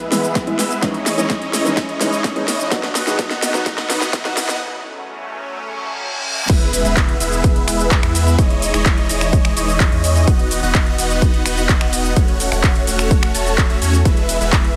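Festival progressive house at 127 BPM in E major, triumphant and anthemic, taken from a longer piece. It opens on a build-up, with a huge, euphoric supersaw lead riffing up front through a filter sweep, phaser and tape echo. Beneath it sit a lush, detuned pad holding sustained chords in the background and a dark, mellow baby grand piano with audible action noise that accompanies only until 4.3 seconds. An overdriven big-room kit with a huge snare, metallic hats, claps, snaps and shaker plays a drum fill, while a punchy, layered electronic kick sits up front and very quiet risers, a reverse cymbal and an impact add lift. After a short break, the drop lands at 6.5 seconds, where a deep, thick saturated sub bass enters and the pumping sidechain drives the cycle of E, C#madd9/E, B/E and F#m/E under light reverb.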